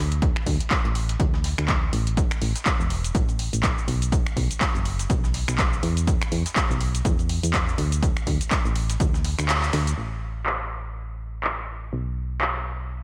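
Piano house at 123 BPM in 4/4, with a swung sixteenth-note feel and an uplifting, joyful mood, heard in a short cut from a longer piece. A solid FM bass sits up front for the whole 13 seconds, round and mellow with a fast attack and decaying notes, pumping under sidechain compression in a low register. A punchy analog drum machine supplies cabasa, finger snaps, handclaps and hi-hat, its hats, snare, percussion and room tone softened by low-pass filtering, while an electronic kick drum re-recorded in a large room drives the beat until 9.1 seconds. Far back in the mix, a gritty, pitched-up breakbeat sampler kit adds a tape-warm hi-hat and a medium-tuned snare until 9.9 seconds. At 9.5 seconds the kick drops out and the band hits an accent, leading into a new section at 10.0 seconds. Light digital reverb gives the whole a gentle sense of space.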